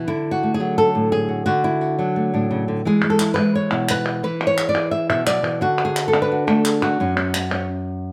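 Driving along in a straight 4/4 at 174 BPM, this short flamenco passage feels intense and mournful from its first note. A fingerpicked acoustic flamenco guitar carries the melody throughout, sitting up front with a warm tone, audible finger squeak, and a touch of plate reverb, ranging from F#2 up to E5. Crisp palmas hand claps join at 3.0 seconds, their acoustic snap made dense and gritty by compression and saturation, and they sit lower in the mix than the guitar. The harmony moves from D to E, back to D, then lands on an F#5 chord, with the claps dropping out at 7.7 seconds as the music comes to a stop. A moderate studio room surrounds the performance, and the tuning sits slightly sharp at A4 = 441 Hz.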